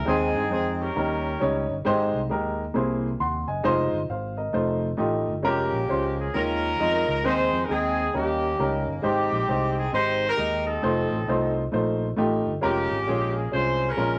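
This uptempo gospel excerpt moves at 134 BPM in a swung 4/4, settling in A-flat major with a soulful, hopeful mood. A horn section carries the melody in a pop style, its ensemble sound roomy and touched with light vibrato. It states a brief phrase until 1.7 seconds, drops out, then returns at 5.5 seconds and carries on to the end. Underneath, a baby grand piano supplies up-front accompaniment with a natural, short-sustained tone, while a fingered electric bass sounds direct and amped across the low register. The harmony passes through rich colours such as Abmaj7, C7alt and Eb9sus4, and a moderate studio reverb gives the whole a sense of space.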